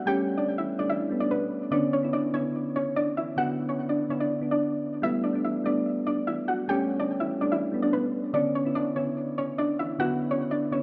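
Light studio reverb softens this dark, eerie half-time hip hop excerpt at 145 BPM in B minor, where a round, sub-octave pluck melody with chorus, low-pass filtering and digital delay sits up front over mellow, chorused electric-piano-like synth keys, both playing throughout the 10.8 seconds as the harmony moves between Gadd9 and Bmadd9.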